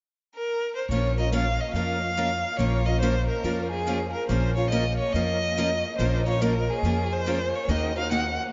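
The violin enters first at 0.3 seconds, bowed up close with vibrato and portamento, a single expressive player carrying the melody in this fiery, virtuosic jazz manouche fragment in Bb minor at 142 BPM with a swung feel. At 0.9 seconds two picked steel-string acoustic guitars join, one boxy parlour instrument and a very quiet concert one, both bright, alongside a woody, thumpy gut-string upright bass played pizzicato up front. The chords move from Bbm to Ebm at 7.7 seconds, and the whole is bathed in a vast, echoing cathedral reverb that rolls off the highest treble.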